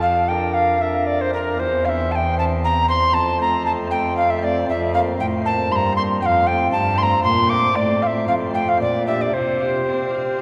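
A baroque-style classical sonata movement with continuo, this short excerpt in F major moves at 116 BPM in a straight 3/4, its mood radiant and serene. The alto recorder carries the melody from Bb4 to D6, its airy wooden tone marked by vibrato, a crisp attack and a touch of chiff, sitting up front in the balance yet sounding slightly distant. Beneath it, a chamber organ voiced with sparkling flute stops supplies light, bright accompaniment with its own chiff, while a single bowed cello plays the bass line in a rich, reedy gut-string tone with light period-style vibrato. All three parts play throughout the roughly 10.4 seconds. The harmony moves from Bb/F through C/E to a long stretch on F, then passes through F/A and Gm/Bb to settle on an unresolved Csus4. A wet cathedral reverb with a 4.4-second decay surrounds the ensemble, giving it the spacious ring of a church or concert hall.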